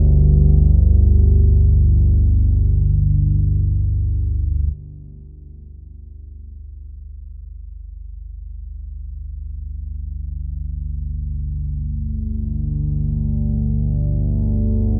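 Ambient in free time, this cavernous and unsettling fragment from a longer piece rests on a single analog drone sustained low in the register from G1 to D2 for the full 15.0 seconds, tuned to A4 = 439 Hz over a G5 chord. The sawtooth and pulse-wave tone is nasal and evolving, shaped by pulse-width modulation, a slow attack, a long release and lush chorus, and it sits up front in light reverb. A filter sweep colours the drone through the opening 4.8 seconds, after which a fade-in carries it to the end.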